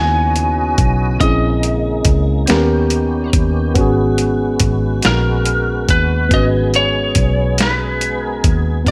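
Lightly reverberant digital ambience surrounds this short cut from a longer piece, a slow, sultry, late-night R&B groove in six-eight moving through C#m11, A#m7b5, D#7b13 and G#m11. Up front, a gritty, overdriven sampler-style drum kit with a thumpy kick enters at 0.4 s beside a dark, foam-muted, round electric bass, while a slightly broken-up, picked lead guitar with slapback echo carries the melody. Beneath them, a worn, slightly out-of-tune tine electric piano plays accompaniment through a combo amp, and a full tonewheel organ holds sustained chords through overdrive, chorus vibrato and a slow rotary speaker.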